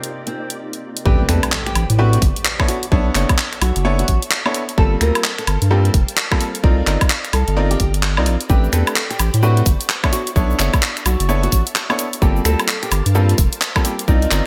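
UK garage in a bouncy, soulful two-step groove at 129 BPM, swung on the 16ths, this excerpt opens with a small, fingerpicked nylon-string guitar melody drenched in lush chorus and delay, brilliant grand piano stabs with digital delay, a very quiet, silky string machine warbling underneath, and an up-front garage kit of finger snaps, handclaps, hi-hat, shaker and woodblock in gated reverb. At 1.1 seconds the drop arrives with a background electronic impact, a tight layered kick and a deep, thick, saturated sub bass that sits prominently beneath minor eleventh chords. The bright 1980s-style digital production carries only light reverb.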